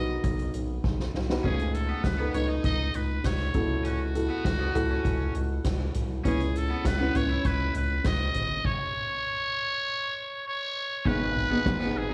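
A muted trumpet, buzzy and raspy with a digital delay, opens this dramatic, bittersweet piano-driven pop excerpt at 100 BPM in a straight 4/4, sitting up front over a dark, woody upright piano and a round, deep analog bass. A soft-mallet drum kit with dark cymbals and a boomy kick enters at 0.2 seconds, and a drum fill leads into the main body at 1.4 seconds, where a bright, overdriven garage guitar riff joins, double-tracked and set low in the mix. The harmony moves from B through B7/C# and F#m7/C# to C#m7 before a stop from 8.7 to 11.1 seconds, then settles on G#m as the piece is cut off. The trumpet's gritty, growling tone carries the melody, while the boxy piano and sustained bass hold the low end together. The whole recording has a worn, warbling cassette character with pitch drift and a small room's ambience blended into a moderate studio reverb.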